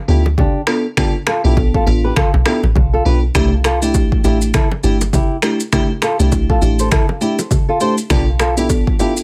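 Breezy and joyful, this afrobeats excerpt moves at 101 BPM in C major with a gentle sixteenth-note swing, opening on a break that runs to 3.4 seconds as the harmony shifts from G7 to C6. A crystalline FM electric piano with a warbling chorus and plate reverb sits up front, joined by a dark, boxy, thumb-plucked flamenco guitar riff trailed by digital delay, while a deep, round log drum bass with a fast, decaying attack anchors the low end. Bright, hard-hand bongos and congas enter at 0.3 seconds, and an overdriven, layered deep house kit of deep kick, finger snaps, rim click and shaker joins at 0.4 seconds, all set in a light reverb.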